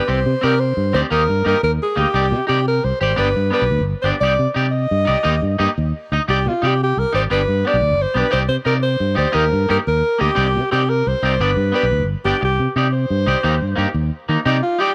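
A breathy alto saxophone carries the melody up front, its pop-style solo line marked by vibrato and a punchy edge, in this danceable highlife guitar-band passage in a straight 12/8. Beside it, a picked, twangy electric guitar sits just at the edge of break-up, while a round, punchy fingered bass plays direct and amped, all three parts close in a light studio reverb. The harmony circles steadily through Cmadd9, Eb and G, giving this warm fragment of a longer piece a looping pulse.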